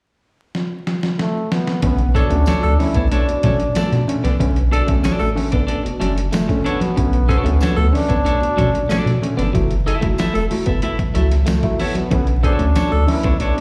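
A breathy trombone carries the melody in this sly, cool funk excerpt at 93 BPM in B minor, its scooped, whispered notes and light vibrato sitting intimately over the groove from 1.2 seconds. A dusty, sampler-style drum kit opens with a fill at 0.5 seconds, its thumpy kick and fat snare overdriven and gritty, before a round analog bass enters up front at 1.8 seconds with deep, dark sustain. Alongside it, a woody upright piano with audible action noise plays short stabs, and a slightly broken-up electric guitar picks a riff further back, both touched by slapback echo. A breathy tenor saxophone holds a second line on a single A4 with scooped, jazz-style phrasing, while a clean, dark electric guitar adds picked accompaniment and ringing congas and a jingly, saturated tambourine sit very low in the mix. The harmony moves from Bm9 to F#m7 and back, and the whole track comes across like a live gig through a venue's PA, with recital hall reverb and vinyl crackle.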